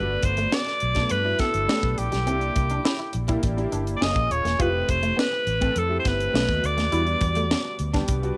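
A growling, raspy alto saxophone carries the melody up front over a dry, high-tuned funk drum kit, a round, punchy muted fingered bass, a clear concert grand piano with chorus and audible action noise, and a clean picked electric guitar riff in the background, giving this short cut of polished 1980s jazz-funk pop a glossy, breezy mood at 103 BPM in G major with a light-reverb cassette home-recording sheen.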